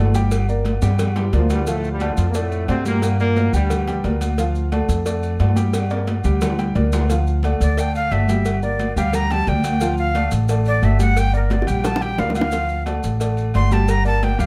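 This is a passionate, driving salsa excerpt in D minor at 177 BPM, its harmony swinging between D minor and G minor. A worn baby grand piano with long sustain comps in the middle register, while a woody, growly pizzicato upright bass sits up front with a dark, thumpy steel-string tone. The percussion bed layers ringing, high-tuned congas set in the background, tight cowbell and soft-handed bongos, grainy, saturated maracas, and distant metal-shell agogo bells and timbales, with several drum fills along the way. A brilliant, tight trombone section states a pop-style line with light vibrato from 1.3 to 4.2 seconds. From 7.6 seconds a breathy jazz flute takes the solo to the end, its reedy, metallic tone marked by a crisp, chiffy attack and vibrato. The recording uses close, detailed microphones with light reverb.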